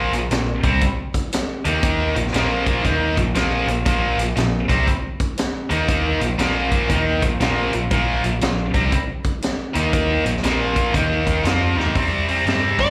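Blues rock power trio with a southern rock edge, this smoky, heavy swung excerpt is driven by a bright, double-tracked distorted guitar riff with slapback echo, anchored by a dark, round foam-muted bass and a punchy vintage kit with a high-tuned snare, all ringing through a small club room until a drum fill at 11.7 seconds leads to an overdriven slide guitar's brief entry at 12.8 seconds.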